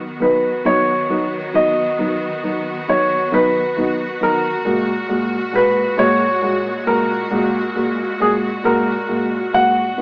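Swaying and heartfelt, this pop fragment in 6/8, cut from a longer piece, sets a polished grand piano melody over a dark, woody upright piano accompaniment with audible action noise and a slightly detuned, boxy character, both placed up front. A clear, lush string section with vibrato holds sustained chords alongside them as the harmony moves from B to F#add9/A# at 4.7 seconds. Played live together in one room with moderate studio reverb, the whole takes on a small-speaker sound.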